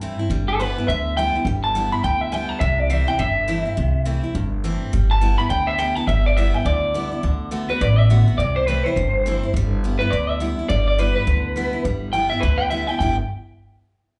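This short cut from a longer rockabilly piece sounds like a live club gig heard through the venue's PA, with a light club reverb and a muffled top end. The mood is rowdy and upbeat, driven at 208 BPM in 4/4 with a swung eighth-note feel in G major. An upright bass sits up front with a woody, thumpy, dark pizzicato tone from gut strings, while a picked steel-string dreadnought acoustic guitar plays bright, full-bodied picked accompaniment lower in the mix, finger squeak audible under its plate reverb and slapback echo. From 0.5 seconds the lead comes from an electric guitar through a small old amp, twangy and slightly broken-up with a lo-fi edge, also placed up front and soaked in plate reverb, slapback and tape echo. The harmony moves through G6, C6 and D6 chords before the passage shifts into two brief closing sections from 11.9 seconds.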